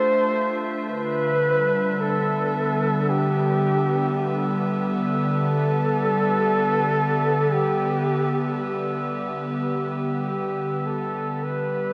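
A slow, straight 4/4 pulse at 54 BPM carries this reflective, spacious ambient fragment, cut from a longer piece and tuned a touch below standard pitch at A4 = 437 Hz. A mellow, distant-sounding flugelhorn sits up front as the solo voice, singing a classical-style melody between G4 and C5 with gentle vibrato, trailed by a diffuse ambient delay. Beneath it, an evolving wavetable pad holds sustained chords from D3 to E5, its detuned, warbling sine tone morphing through chorus and its own built-in reverb, moving from Dm9 to Em/D at 0.9 seconds. Far in the background, a pure, ethereal glass harmonica on a high E6 fades in across the whole passage, its band-limited, vintage sound beating softly. The huge ambient reverb, with a tail of 8.3 seconds, bathes the scene before the music fades out from 6.8 seconds to its end at 11.9 seconds.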